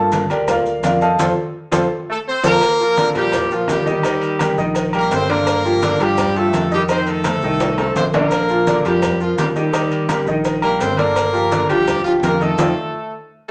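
Set in a wet studio reverb, this festive, danceable salsa excerpt moves at 168 BPM in Bb major, with a clear, present grand piano up front leading the opening over a dark, round fingered electric bass. Thick-skinned, low-tuned congas, grainy maracas, ringing metal-shell timbales with agogo bells and a very quiet, saturated cowbell sit in the background, with band accents and drum fills marking the way. At 2.1 seconds a bright, punchy horn section with light vibrato takes the melody up front over a cycle of Bb, Eb, Gm7 and F7, closing on a final band accent at 12.6 seconds.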